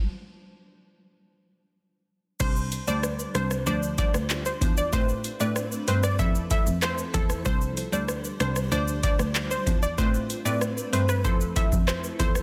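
Dancehall at 95 BPM, sultry and hypnotic, this cut opens on a silent stop before the booming analog drum machine, overdriven and up front with a deep kick, metallic hats, handclaps, rim click, shaker and crash, drops in at 2.4 seconds alongside a bowed cello bass played sul tasto with light vibrato and an airy, intimate tone. A round, detuned analog pluck carries the melody through chorus and digital delay, while a crisp wavetable chord stab pumps under a phaser through a cycle of Csus2, Dm7, Amadd9 and Fmaj7. From 3.1 seconds a blurred granular cloud pad sits in the background with its own reverb, the whole mix dense, dry and heavily limited.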